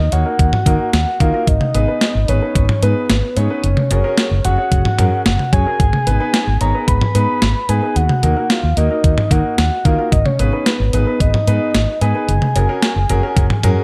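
Set in a digital ambience, this cool, melancholic synth-pop excerpt at 111 BPM in G# dorian features a thumpy, overdriven 12-bit drum machine with cowbell, toms and gated reverb, an up-front amped fretless bass, an open, deep-toned grand piano, and a soft, round, octave-layered synth lead with chorus carrying the melody over D#m, G#m and F#add9 chords.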